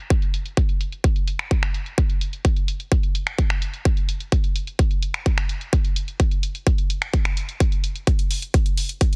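A punchy, layered electronic kick drum sits up front from 0.1 s alongside a house drum kit of finger snaps and warm hi-hats, its snare softly clipped and filtered and its hats filtered, driving this uplifting, euphoric EDM fragment at 128 BPM in a straight 4/4 through digital ambience and a dense, heavily limited modern master before a build-up arrives at 8.1 s.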